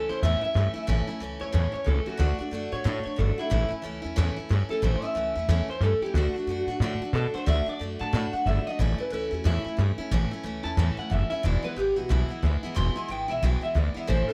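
Rollicking and upbeat, this rockabilly excerpt drives along at 182 BPM in 4/4, with a swung eighth-note feel and a home key of A major. An electric guitar through a small old amp carries the melody in a bright, twangy, slightly broken-up, lo-fi tone, dressed in lush chorus and tape echo. A picked steel-string acoustic guitar supplies a full-bodied, dreadnought-style accompaniment, with finger squeak audible on the strings. Up front in the mix, a plucked upright bass with gut strings lays down a dark, woody, thumpy low end. All three play from the opening through to 14.3 seconds, over harmony moving between A, D and E, while a sense of studio room sits around the group.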